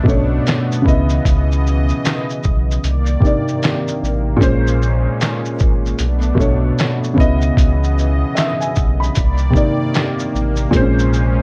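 A soft, felt-muted upright piano with a cassette-tape patina opens this reflective, melancholic lo-fi hip hop fragment, cut from a longer piece, alongside a quieter, detuned sawtooth analog pad shimmering with chorus and tremolo; from 0.1 s a deep sine-and-triangle sub bass with octave and a muffled, pitched-down sampler-style drum kit (thumpy kick, medium-tuned snare, handclaps, hi-hat and shaker) settle into a swung groove beneath drifting minor ninth chords, wrapped in light reverb and tape haze.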